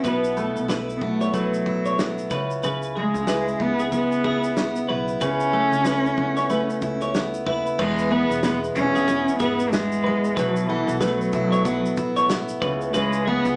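Carefree and heartfelt, this swung acoustic pop excerpt puts a smooth, bowed cello melody with vibrato up front, entering at 0.1 seconds over a full-bodied dreadnought steel-string guitar picking the accompaniment. A bright, twangy twelve-string electric guitar with analog chorus adds clean arpeggios, while a woody, dark pizzicato upright bass sits in the background and a natural country kit in a small room supplies punchy kick, snare, shaker and crash. The cello carries plate reverb, the mix sounds as if heard from further back in a room through a small speaker, and the second section begins on an E chord at 7.8 seconds.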